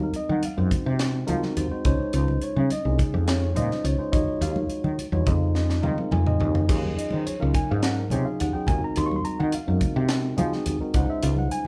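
A growly, woody fretless electric bass anchors this funky, slick electric jazz fusion excerpt up front, joined by a mellow tine electric piano comping on rich extended chords, a crisp, punchy fusion drum kit with a high-tuned snare, and bright, hard-handed congas in the background, all played live in a large studio room, with the electric piano and drums each taking a fill near 6 seconds.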